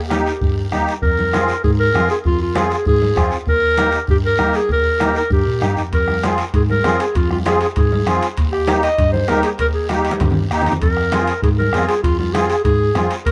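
Driving and fiery, this cumbia excerpt in F minor moves at 196 BPM, with an up-front classical-style clarinet carrying the melody over a mellow tine electric piano bass line, reedy, shimmering musette accordion accompaniment, soft-beater bombo, hard-hand congas that ring, and a raspy, dry guiro, while ringing metal-shell timbales enter in the background at 5.9 seconds and a drum fill arrives at 9.9 seconds, all alternating between Eb and Fm in light reverb.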